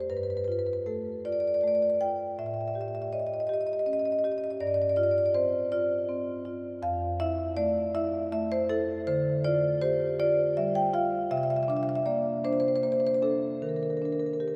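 Set in a slow, straight 6/8 at 54 beats per minute counted in dotted quarters, this contemporary classical piece for solo marimba has a flowing, hypnotic pull. The single marimba, played with medium mallets, sits up front with a warm tone and covers a range from F2 to G5. Its harmony drifts through rich, colorful chords, moving from G9 and A7#11 to G7sus4 before settling into D minor at 6.8 s on Fmaj7 and Dmadd11. From there it passes through C9 and closes on Ebmaj7 at 13.6 s. A deep cathedral reverb with a 5.9-second decay surrounds the instrument, so each note blooms and lingers in a vast, echoing space. The passage is cut from a longer work and stops at 14.6 s while the harmony still feels open.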